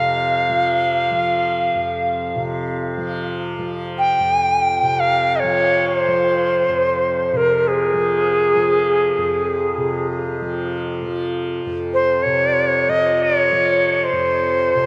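A bright, reedy Native American-style cedar flute sits up front and carries the melody, its airy wooden tone marked by tongued notes, a chiff and vibrato between Ab4 and G5, trailed by a diffuse ambient delay. Beneath it, a tanpura holds a softly plucked drone from F2 to F3, buzzing and shimmering at a lower level than the flute. This is meditative world music in F minor, moving in free time with a haunting, spacious mood. Both parts play together from the start to 14.9 s, in a section cut from a longer piece. The dark, warm production is soaked in a huge ambient reverb with a 6.5-second decay.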